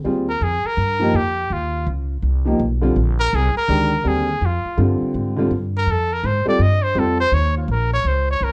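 Relaxed and sophisticated, this short swinging jazz cut from a longer piece features a bright, vibrato-laden trumpet soloing up front through plate reverb, over a woody, growly pizzicato upright bass and a smooth, vintage concert grand piano that comps until 7.2 seconds, all set in a moderate studio ambience with a dark, warm production.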